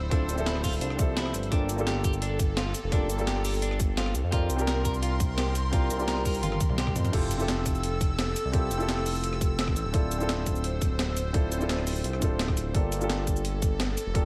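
A dry sound with little reverb opens this uplifting, lush slice of liquid drum and bass, cut from a longer piece and driven by a straight 4/4 pulse. A tight, layered electronic kick sits under a gritty, compressed breakbeat-style kit of hi-hat, cabasa, rim click, crash, toms and a high-tuned snare, with a drum fill from 6.4 to 7.1 seconds. A smooth, nasal synth bass with tube saturation and vibrato sits up front, while a dark, mellow concert grand piano with digital delay plays the accompaniment over chords moving from Dm9 through Gm9 and C7sus4 to Fmaj7. Above it an airy, breathy pad holds sustained chords, its warbling vintage tone shaped by chorus and sidechain pumping. A twangy, slightly broken-up electric guitar picks arpeggios through tape echo and 12-bit sampler grit until 6.9 seconds, after which the rest of the band carries on.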